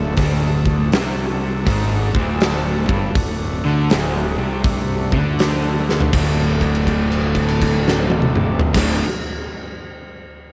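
A double-tracked, overdriven semi-hollow guitar drives this gritty, driving blues rock and southern rock excerpt, picking a bright, low riff in D mixolydian at 81 BPM with a swung 4/4 feel, while a huge arena drum kit with a fat snare, punchy kick and pumping room sound sits up front beside it. A dark, round fuzz bass holds down the bottom, and a thick tonewheel organ through a slow rotary speaker sustains chords in the background. A drum fill at 5.8 seconds leads into a new section at 6.1 seconds, where a held note rings until 8.7 seconds, all set in a small room.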